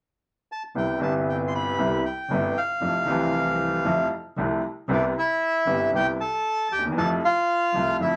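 This tango excerpt moves at 116 BPM in 4/4 with a rubato feel in C major, elegant and passionate, drifting between Cmaj7 and Fmaj7 and tuned slightly low to A4 = 438 Hz. A reedy, airy bandoneon carries the melody up front from 0.5 seconds, joined at 0.8 seconds by a woody upright piano with open, long-sustaining accompaniment and a distant, bowed double bass playing smooth, even lines with vibrato. A wet studio reverb with a short 0.5-second decay frames the ensemble, and a second section begins at 4.9 seconds as the piece continues beyond the cut at 8.2 seconds.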